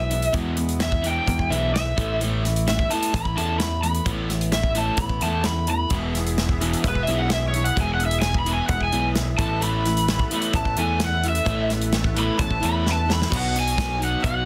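An up-front, bright overdriven slide guitar carries a solo melody from the opening, over a jangly, nostalgic folk rock and heartland rock groove at 130 BPM in E major, built on a round, punchy picked electric bass, a double-tracked crunchy guitar riff, a picked steel-string acoustic guitar in the background and an airy, polished country drum kit with a punchy kick and medium-tuned snare. At 5.9 seconds a reedy musette accordion enters with shimmering sustained chords in the background, and a drum fill at 12.8 seconds leads into a change to B at 13.3 seconds. Light reverb sits over a dense, heavily limited modern master in this excerpt cut from a longer piece.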